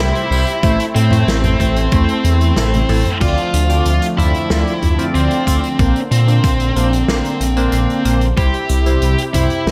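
Nocturnal and cinematic, this synthwave excerpt moves at a straight 93 BPM in D minor, with an up-front, high-gain lead guitar carrying the distorted melody, touched with delay, over a brassy, chorused analog pad, glossy pulse-wave polysynth stabs and a deep, rumbling detuned saw bass. A distant, roomy acoustic kit with dark cymbals and bundle sticks plays from 0.1 s, joined at 0.6 s by a thumpy, overdriven electronic kick, and a drum fill at 2.6 s leads into the second section at 3.2 s. The chords run C, Am, Dm7, Bbadd9 and back to C under a light reverb.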